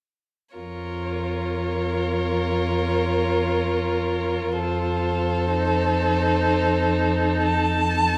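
Classical string quartet in a slow, romantic movement, yearning and elegiac, moving at 51-65 BPM in a flexible rubato in Bb minor, cut from a longer piece and settling from Bbm/F onto F7 at 4.5 seconds. All four players enter together at 0.6 seconds: the first violin sings the melody with rich vibrato and expressive portamento, the second violin plays a smooth, even inner line, and the viola adds focused, distant accompaniment. Beneath them the dark cello sits up front on its bass note with its own vibrato and portamento, all set in the reverberant space of a church or concert hall.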